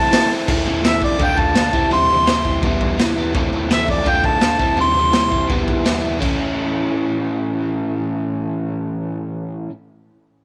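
Menacing and raw, this short cut from a longer garage rock number charges along at 167 BPM in a straight 4/4, set in A minor with tuning a touch sharp at A4 = 441 Hz. An overdriven electric guitar drives the riff from the start, its bright, picked tone double-tracked, compressed and placed up front. The acoustic drum kit supplies crash cymbal, hi-hat, kick drum, snare drum and toms in a small, pumping room, with a punchy kick, a medium-tuned snare and a gritty, saturated sound whose top end is rolled off. Over this a harmonica with a smooth top takes a pop-style solo, given its own overdrive and tape echo, moving through a cycle of Am, Dm, C and Em until it stops at 5.5 s. The harmony lands on A at 6.2 s and the drums drop out at 6.3 s, leaving the guitar alone until 9.7 s. Light reverb and studio ambience frame the mix, which carries some lossy compression artefacts.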